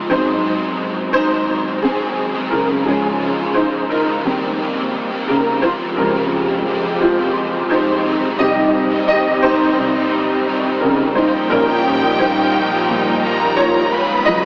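A polished, up-front grand piano carries solo lines through this warm, anthemic piano-driven pop excerpt at 87 BPM in 4/4, over a crunchy overdriven electric guitar riff, both treated with ensemble chorus, while an airy, detuned sawtooth pad with a filter swell and chorus enters with sustained chords at 5.6 seconds and a lush, bowed violin section with vibrato adds a distant second line from 11.2 seconds, the mix soaked in huge, dreamy reverb with an AM radio sound.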